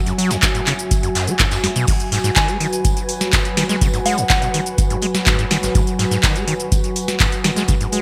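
A bright, 1980s-style digital sheen with light reverb frames this trippy, driving acid house excerpt, cut from a longer piece and moving in a straight four. A rubbery, resonant sawtooth acid bass carries the riff with a fast, decaying filter pluck, saturated by overdrive and cassette tape grit and trailed by delay. Up front, a deep, tape-warm electronic kick sits beside a booming analog drum machine of crisp snare, metallic hats, handclaps, cabasa and crash cymbal, both re-recorded in a large room, the machine with gated reverb, while a distant, roomy brush kit with snare, hi-hat and tambourine sits behind them, its top rolled off. A moody, full-bodied detuned analog pad with a sub octave holds sustained chords, shifting from F#7(no3) to G#m7 at 1.9 seconds, while an airy, breathy pad with a noise layer and moving notch adds texture, both under chorus and sidechain pumping. A soft, pure FM bell with chorus and delay adds a gentle melody in the background from 2.4 to 4.5 seconds.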